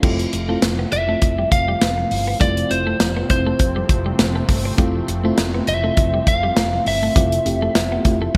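This nostalgic, glossy 1980s-style pop clip opens on an Fmaj7, with drums, bass, keys, pad and twelve-string guitar sounding together from the first beat at 101 BPM in 4/4 and a light swing on the sixteenths. Up-front, punchy drums with a medium-tuned snare, hi-hat, crash, toms and kick sit under gated reverb. A dark, round fretless bass with a woody character and an ensemble chorus sits low beneath them. A soft, full-bodied FM electric piano carries the accompaniment with a chorus sheen. Behind it, a bold, brassy analog pad holds sustained, detuned sawtooth chords with vibrato, and a bright, twangy twelve-string electric guitar plays a clean, picked riff touched with subtle chorus and digital delay. At 0.9 seconds a slightly broken-up lead guitar steps forward with a picked, compressed melody high in its range, trailed by digital delay, all framed by the light studio reverb of a bright digital 1980s production.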